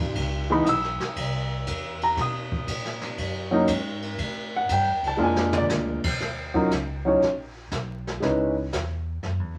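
Upright bass and a brushed jazz kit open this swinging, late-night small-group jazz excerpt, cut from a longer piece. The bass is woody and plucked, its steel strings sitting low beneath a kit heard up front in a small room, with dark cymbals, a medium-tuned snare and a boomy kick. A warm concert grand piano enters at 0.5 seconds as accompaniment, intimate and natural with deep bass, long sustain and audible action noise. A short drum fill at 5.2 seconds leads into a new section with a darker minor colour. The piano drops out at 8.5 seconds while bass and drums carry on to the end. A wet studio reverb and a layer of vinyl crackle give the whole recording an after-hours feel.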